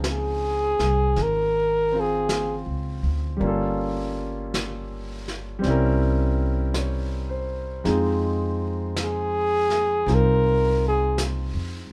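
A slow jazz ballad at 54 BPM in 4/4 with a swung eighth-note feel, this melancholic, wistful excerpt is cut from a longer piece. A mellow flugelhorn carries the melody as a solo from 0.1 seconds, staying in a narrow range between Ab4 and Bb4, its tone colored by light vibrato and scooped notes and sitting present and up front in the mix. Beneath it, a concert grand piano with a deep, natural low end supplies accompaniment, while a woody pizzicato upright bass on steel strings anchors the harmony up front. A jazz kit played with brushes on snare, joined by hi-hat, adds a dark, smooth pulse with a rolled-off top, recorded in a studio room. The harmony moves from Dbmaj7 through Gm7b5 and C7b9 to Fm7, and light reverb gives the whole a gentle sense of space.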